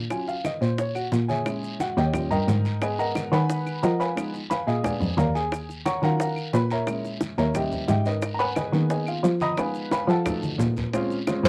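A lightly reverberant home cassette recording carries this sultry, driving Afro-Cuban jazz excerpt at 177 BPM, where a dark baby grand piano with audible action noise solos over minor-ninth changes, a veiled, bowed muted cello holds the bass from 0.6 seconds, round low-tuned bongos, distant thick-skinned congas, woody claves, a raspy guiro and grainy maracas drive the groove, a drum fill arrives at 10.4 seconds, and a ringing vibraphone sounds a single C5 at 11.5 seconds.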